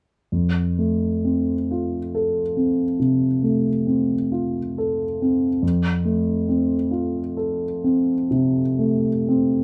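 Warm and lyrical, this short classical passage, cut from a longer piece, unfolds in a lilting 12/8 with a freely flowing rubato feel. A single concert grand piano plays an accompanying role from 0.3 to 9.6 seconds, moving through a range that reaches from low in the bass up into the middle register. Its tone is dark and mellow, with a deep bass that gives the harmony a rounded weight. Close, detailed microphones place the instrument up front, while a light reverb adds a gentle sense of space around it.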